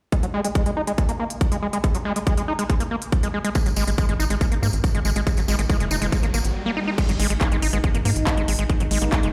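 This excerpt opens on a squelchy, gritty acid bass riff with distortion, dub echo and sidechain pumping, its filter sweeping from the start, over an overdriven, tight electronic kick and a layered techno kit of crash, handclaps and smooth hi-hats. It is driving, alien psychedelic trance at 140 BPM in G# minor, played in a straight 4/4. A jingly tambourine joins at 3.5 seconds, and a punchy sawtooth sequencer bass adds a tight, decaying low line soon after. A riser climbs in the background toward a short break that ends at 7.0 seconds. The second section brings an evolving, morphing wavetable pad, mellow and set in the background with chorus, phaser and pumping, followed by a very quiet, juicy blip pluck. The mix carries a large studio reverb, as if played on a big sound system in a bare room.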